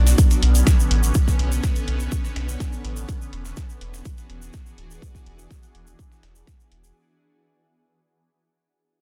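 A shimmering, ethereal pad of slow-attack chords with chorus, phaser and granular octave-up shimmer opens this hopeful, expansive progressive house clip at 124 BPM, alongside a round, deep analog bass with tube saturation, both breathing with sidechain pumping, before a punchy, up-front electronic kick, a gritty, tape-toned sampler-style kit of high-passed hi-hat and medium-tuned snare in small room ambience, a very quiet electronic hi-hat and a grainy, bright tube shaker join at 0.1 to 0.2 seconds, moving from Bmadd9 to E7 at 3.1 seconds within a dense, heavily limited master as the 7-second excerpt fades out.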